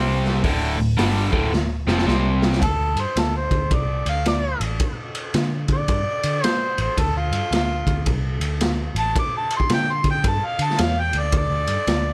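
Brooding and heavy, this swung blues rock and southern rock excerpt opens with a crunchy, bright, double-tracked overdriven guitar riff over a dark, round, foam-muted picked bass and a gritty, saturated garage drum kit with dark cymbals, punchy kick and a pumping small-room sound, until a drum fill at 1.5 seconds hands off at 2.6 seconds to a mellow, jazz-style harmonica solo with light vibrato and scooped notes, colored by overdrive and digital delay, all in light reverb.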